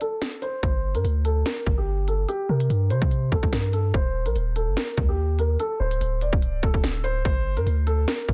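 A half-time drill groove in 4/4 anchors this ominous, tense hip hop clip, which is cut from a longer piece. The electronic drum kit sits up front with a hard-clipped kick, a sharp snare and crisp hi-hats, and it runs from the opening moment to the end. A dark, boxy grand piano carries the melody in a narrow upper-middle range, shaded by a low-pass filter and digital delay, with a filter sweep moving across it until 7.3 seconds. At 0.6 seconds a long, deep 808-style bass enters, a sine tone with a fast attack that decays and sits up front beside the drums. The mix is held in a digital ambience and finished with a dense, heavily limited modern master that sustains the ominous, tense atmosphere.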